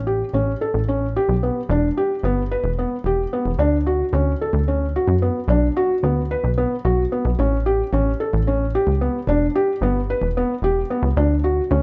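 Contemporary instrumental chamber music in 7/8, this short piece cut from a longer work moves at 221 BPM counted in eighths, with a mood that feels both urgent and pensive. A plucky analog bass sits up front from the start, its punchy, funky tone built from sawtooth, square and triangle waves with a wave-folded edge, fast attack and a decaying filter pluck. Beginning at 0.1 seconds, a felt-muted upright piano plays arpeggios in a soft, intimate register, its mellow sound carrying audible action noise that keeps it close and natural. The harmony cycles through A7, Em, Dmaj7 and Bm before returning to A7 and closing on Dmaj7 at 11.2 seconds. Light reverb gives the pair a modest sense of space, while the top end stays gently rolled off, keeping the overall sound dark and rounded.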